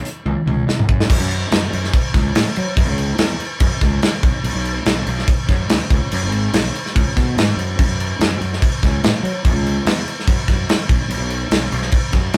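Math rock with a midwest emo edge, this restless, intricate excerpt moves at 144 BPM in a straight 4/4 in F# minor, cut from a longer piece. A modern studio drum kit sits up front with bright cymbals, a tight kick, a medium-tuned snare and toms, playing a fill from 0.3 to 1.1 seconds before the main section takes hold. Beneath it, a fingered electric bass pushes a dark, round, punchy fuzz through overdrive, all captured with light reverb in a rough rehearsal-room sound.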